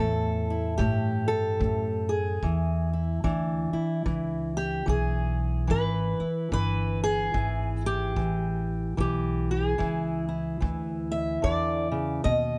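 A fingerpicked steel-string acoustic guitar carries the melody up front from the first moment, alongside a woody pizzicato upright bass in this swaggering, soulful acoustic country blues with a gentle swing. A punchy kick drum played with brushes enters at 0.8 seconds and sits in the background with a natural small-room sound. The harmony moves from A7 to E7 at 2.4 seconds, and the dry recording is cut from a longer piece.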